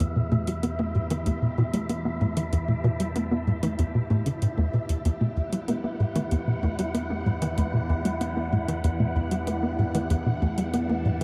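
Cosmic and mysterious, this short cut from a longer piece of ambient, sequencer-driven space music moves at 95 BPM in a straight 4/4, resting on a single Em7 chord in E minor. Up front, a tight, punchy sequencer bass drives a riff from E2 to B3, its sawtooth and square-wave tones given a fast-attack filter pluck, ensemble chorus and tape echo. Beneath it, an analog drone holds E2 with slow-attack pulse-width modulation and chorus, while a booming analog drum machine adds metallic hi-hats and toms through tape echo. A swirling, vintage string machine fades in across the full 11.2 seconds with bright sustained chords, colored by ensemble chorus, phaser and shimmer reverb. An airy, breathy, wind-like noise texture spans E4 to F#5 in its own reverb and shimmer, and the whole mix sits in a moderate plate reverb with a dark, warm production.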